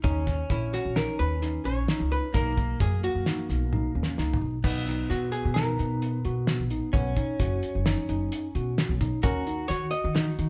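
A driving, bright stretch of progressive instrumental band music in 5/4 at 130 BPM and in B major opens with the full rhythm section: a cloth-damped, thuddy drum kit with dark cymbals, a fat snare and a tight kick, sitting up front with a saturated, gritty, rolled-off sound. Beside it, a woody, thumpy upright bass with gut strings is played pizzicato and is also placed up front. A clean tine electric piano runs arpeggios through a combo amp with a medium tremolo, while an electric guitar at the edge of break-up plays a compressed, picked second line in the same register. At 0.5 seconds a dark, clean hollow-body archtop guitar, miked and amplified, enters with the picked melody. After a drum fill, the archtop takes a jazz guitar solo from 4.6 seconds over chords moving from Bmaj7 through Badd9/F# to D#m7. The band plays live together in one room, with a moderate large studio reverb around it, and the passage is cut from a longer piece.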